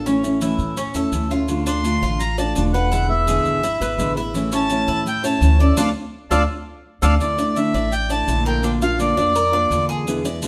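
Warm and danceable, this short excerpt from a longer piece of Cuban son and guajira moves at 168 BPM in D minor, with an up-front, full-bodied fingerpicked nylon-string guitar and a bright, metallic Cuban tres arpeggiating over a woody, thumpy pizzicato upright bass and grainy, close maracas, while a reedy, mid-forward accordion carries the melody from 1.7 seconds as the band hits an accent around 5.8 seconds, all heard as a live group in a moderate stone room.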